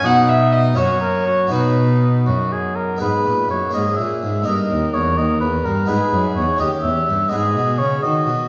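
A mellow, lightly vibrato oboe sings the melody up front in this radiant, flowing excerpt from a baroque-style sonata movement in 6/8 at 83 BPM, alongside a gut-strung period violin on a second line, a brilliant, full-bodied Flemish-style harpsichord plucking the accompaniment, and a dark, bowed cello holding the bass, as the music turns from B major to G# minor at 3.0 s within the reverberant glow of a recital hall.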